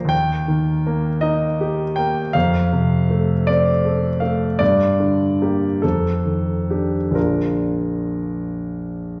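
A clear grand piano opens this serene, dreamy romantic nocturne, playing alone across the full 9.2 seconds of this fragment cut from a longer piece. The pulse moves in a slow 12/8 at roughly 42-55 beats per minute counted in dotted quarters, and the playing breathes with a free, rubato feel. The harmony drifts from Eb to F and Gm, then through a rich F13 before settling on Bb at 7.2 seconds. The instrument spans from Bb1 up to G5, and its natural, intimate tone sits up front, with long sustain and audible action noise. A wet large-studio reverb surrounds it with a 1.2-second tail, giving a sense of the room around the piano.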